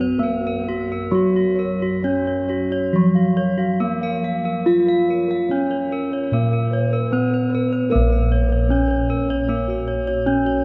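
A straight 4/4 pulse carries this stately, hypnotic Javanese gamelan excerpt, where a dark, smooth bronze metallophone struck with a wooden mallet leads the melody up front, round-toned bossed gongs with padded beaters and a bright, horn-mallet metallophone play arpeggios, and mellow, beating bossed gongs hold the bass in the background, all sounding in a church or concert hall bathed in long cathedral reverb, with the music moving into a new section at 7.9 seconds.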